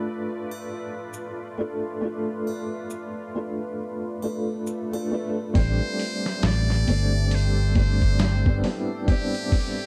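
A dark, small-room haze opens this melancholic, hypnotic trip hop excerpt at 68 BPM in A minor, where a felt-muted upright piano with tremolo, 12-bit sampler grit and tape echo sits up front over a deep, detuned ambient pad with chorus. Faint triangle, maracas and handclaps tick until 5.1 s, an electronic swell sits in the background from 4.2 s, and at 5.6 s a buzzy metal-muted trumpet with vibrato and scooped notes takes the melody while a growly fingered electric bass and a compressed, thumpy, sampler-style soul drum kit join.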